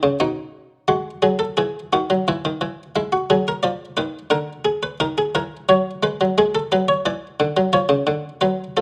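This is a classical, baroque-style two-part invention for solo harpsichord, an elegant and stately fragment cut from a longer piece. It moves at 88 BPM in a straight 4/4, with the instrument tuned to A4 = 444 Hz. The buff-stop harpsichord plays throughout, from 0.0 to 8.8 seconds, across a range from B2 to D5. Its plucked, muted tone has a lute-like, Italian-style character, sitting dry and up front in the mid-range under a light reverb. The harmony opens on G#m/B and passes through G#5, F#7sus2, A#7 and D#m before arriving on C# at 7.7 seconds.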